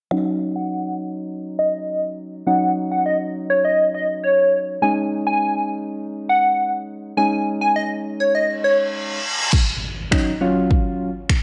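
A punchy, dark lead of detuned square-wave unison carries a catchy melody through a filter sweep and slapback echo, over round, warbling electric-piano-like synth keys that pump with sidechain and shimmer with chorus on Ebm7 and Absus4 chords. This bittersweet, driving dance-pop passage in Eb minor moves at 102 BPM in a straight 4/4. A reverse cymbal rises at 8.7 s into an electronic impact, and at 9.5 s a tape-warm deep house kit arrives with a deep kick, finger snaps and crash cymbal, all set in a moderate plate reverb in this cut from a longer piece.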